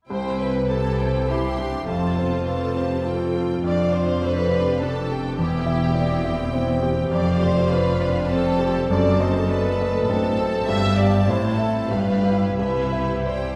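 From its first moment at 0.1 seconds, this passionate, lyrical romantic movement for piano and orchestra opens with the full ensemble together in C major: a clear concert grand piano carrying the melody up front, joined by violins, violas, cellos and double basses. The tempo moves freely with rubato between 87 and 106 BPM in 3/4. The piano's polished, present sound spans from deep bass up to the middle treble, with long sustain and audible action noise lending it an intimate quality. Above it, a bright, focused section of violins shares the melody high in its range with vibrato. A second, smooth-topped violin section sings a warm second line with light vibrato, while lush violas sit distant in the background as accompaniment. The low end comes from a very quiet, close cello section and a chamber-sized double bass section placed further back, heard through a recital hall's reverb from deep in the room as the harmony moves from C through F, a diminished chord and G7 before settling back on C at 12.6 seconds.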